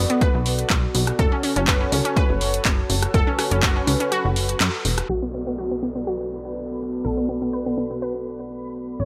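A dark, chorused analog pad, a lush, detuned unison pluck playing arpeggios through digital delay, and a punchy, wave-folded analog bass open this expansive, bittersweet progressive house excerpt together, all three pumping with the sidechain, while a tape-warm house kit of crash, handclaps, hi-hat and rim click, muffled by low-pass filtering, and an up-front electronic kick drive the opening until the kick stops at 3.7 seconds and the kit at 5.2 seconds, when a filter sweep runs across the pluck, a very quiet, grainy cabasa and a background downlifter arrive, and a reversed, dreamy granular texture swells in at 6.2 seconds, all within a light digital ambience.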